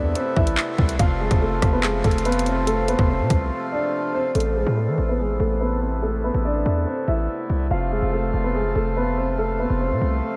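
A half-time drill groove of hard-clipped kick, bright hi-hats, handclaps and rim clicks drives this ominous, tense hip hop excerpt, with the tape-tinged drum kit dropping out at 4.5 seconds while a punchy, heavy 808-style bass with a sine body and noise layer keeps pounding up front. Over it, a dark, boxy concert grand piano carries the filtered, delayed melody against sustained chords from a reedy, nasal hand-pumped harmonium, the two moving between Amadd9 and F. The whole mix is soaked in a huge, dreamy reverb, a filter sweep runs through the second half, and a faint electronic swell arrives at 10.0 seconds.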